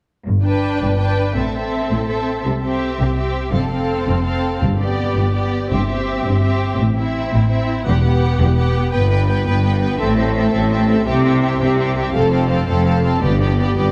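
Lush bowed strings bloom on a moderate scoring-stage reverb in this adventurous, soaring cinematic excerpt, building throughout in G major at 111 beats per minute in a straight 12/8. Rich cello and double bass sections anchor the low end while a dark viola section fills the middle and a second violin section carries a supporting line beneath the expressive, vibrato-laden violin melody, set softly behind the ensemble. Round, soft-mallet timpani on G sit in the background, entering at 4.6 seconds and returning briefly at 13.2 seconds.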